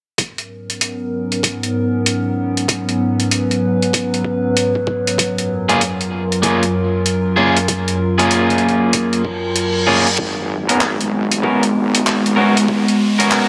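A warbling, nostalgic pad leads this playful, funky glitch hop excerpt at 96 BPM in G# dorian. Its detuned, lo-fi chords pump with sidechain and carry chorus, phaser and their own reverb. A gritty, pitched-down sampler-style kit with handclaps and hi-hat sits up front with a swung 16th feel, backed by a thumpy, compressed electronic kick. From 5.7 s a twangy, slightly broken-up electric guitar adds picked stabs through tape echo and a low-pass filter, shortly after the harmony moves from G#m11 to F#maj7 at 5.2 s. A reverse cymbal arrives at 9.3 s and the kick drops out briefly. A build-up then begins at 10.2 s with a riser, a filter sweep on the guitar and a heavy, saturated wobble bass, all set in a moderate, lush hall reverb.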